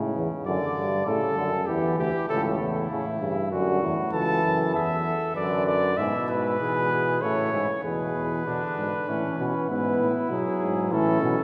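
Stately and joyful, this short cut from a classical imitative canzona for brass ensemble moves at 98 BPM in 3/4, with a clear, distant euphonium accompaniment and a second euphonium carrying the bass with light vibrato from the start, a soft-attacked trumpet entering on the second line at 0.5 s, and a mellow, close-miked cornet taking the melody up front from 4.1 s, the ensemble heard from further back in the long wash of a church reverb.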